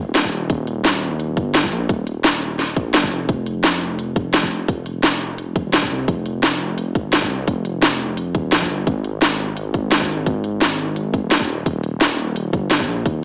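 A dark, detuned sawtooth bass opens this melancholic, dreamy slice of liquid drum and bass, sitting up front with a deep, rumbling tone that pairs a beating detune and sine-like weight with a fast attack and a mellow sustain. At 0.1 seconds a garage drum kit arrives, also placed up front, with a cracking snare and crisp hi-hats, and an electronic kick drum follows at 0.2 seconds with a tight, layered punch. Both drum parts carry a tape-warm character and the added space of having been re-recorded in a large room, while a light swing on the sixteenth notes gives the groove a gentle lilt. The bass sits in a low register between Eb1 and C2 beneath the drums, and the whole mix has the boxy quality of a small speaker with a touch of light reverb. It is a short cut from a longer piece, running as a single section to 13.2 seconds.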